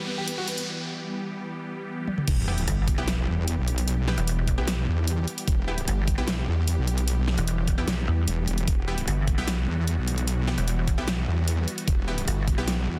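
Heavy wobble dubstep in a half-time feel, aggressive and weighty, where a brief warm grand piano phrase with dub echo and a lush, phased supersaw pad open over a riser and sub drop, joined at 0.3 seconds by a huge-snared, overdriven dubstep kit with bright hats, crash and toms. The drop hits at 2.3 seconds with an overdriven knocking electronic kick and a saturated, detuned sawtooth wobble bass up front. Bold orchestra-hit-like synth stabs set back in the mix follow at 2.5 seconds, and a pulsing pluck wobble bass up front enters at 2.7, all in a dense, heavily limited modern master.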